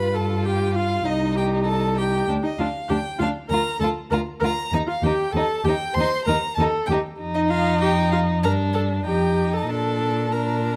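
Quick classical-period string quartet music in 4/4 at 97 BPM, graceful and spirited, taken from a longer piece. A clear, smooth first violin carries the high melody with vibrato, while a focused second violin, set more distant, plays a lower second line alongside an even, rich viola accompaniment and an up-front cello bass. The harmony moves from G9 through Cm and Eb to close on Bb, captured by close, detailed microphones with light reverb.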